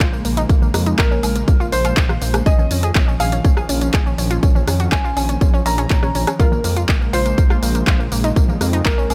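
A warm grand piano melody with digital delay leads this dreamy, bittersweet progressive house excerpt, set over a breathy pad in the background, a round, nasal analog pluck playing arpeggios through chorus and delay, and a dark, rumbling detuned saw bass, all three pumping against a punchy, up-front electronic kick. A house kit of handclaps, hi-hat, tambourine and woodblock rides along, while dry electronic congas and rim clicks join at 0.6 seconds. The mix is close and dry, with little reverb, and the harmony moves from Bbm7 to Dbadd9/Bb at 2.5 seconds before returning to Bbm7.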